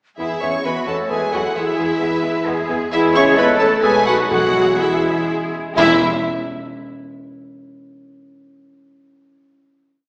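A rich, vibrato-laden violin section carries the melody of this quick, cheerful classical-period movement for symphony orchestra in 3/4 and E major, moving at roughly 121-133 BPM. Beneath it, a second violin section plays smooth repeated notes and chords in the rhythm of the tune, while a focused viola section and a warm clarinet double the tune at the octave, and an airy, hollow flute doubles it in sixths and in unison. Dark, distant French horns add sustained chords and also double the tune at the octave, as a smooth cello section plays a counter-melody and sustained bass, with a soft-edged double bass section doubling the bass line with repeated notes and passing notes. The harmony moves from E through A/C# and B7 back to E, and round timpani strokes on soft mallets enter at 4.3 s with single hits on the bass notes. The whole short piece closes with a final chord from 5.8 s, set in a reverberant church or concert hall with a somewhat small, speaker-like sound.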